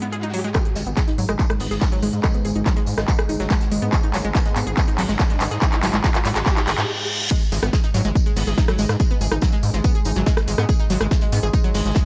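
A straight 4/4 pulse at 142 BPM drives this relentless, hypnotic peak-time techno in G# minor. An overdriven, up-front electronic kick enters at 0.5 seconds together with a loose acoustic indie kit of hi-hat, snare and tambourine sitting in the background, joining a layered techno kit of crash, handclaps, smooth hats, rim click and tambourine. A round, detuned analog pluck riff with chorus and analog delay rides over a nasal, mellow analog drone, while a gritty sawtooth synth bass with tube saturation and sidechain pumping arrives at 0.8 seconds. A background riser and reverse cymbal feed a build-up with a drum fill and filter sweep, a brief stop, then a drop onto G#m at 7.3 seconds, all colored by a small room reverb and a cassette-tape character in this excerpt from a longer piece.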